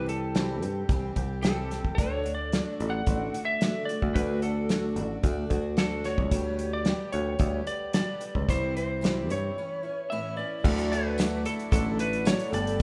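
Set in the moderate reverb of a recital hall, this hopeful, open-road folk and heartland rock excerpt in D major moves at 111 BPM, with a slightly broken-up, compressed lead guitar carrying the melody over a shimmering, octave-doubled picked twelve-string acoustic guitar, a growly, up-front picked electric bass and a damped 70s drum kit with a tight kick and dark cymbals, and after a break from 9.6 s a reedy accordion enters with sustained chords at 10.6 s, joined at 11.2 s by a very quiet, jingly tambourine.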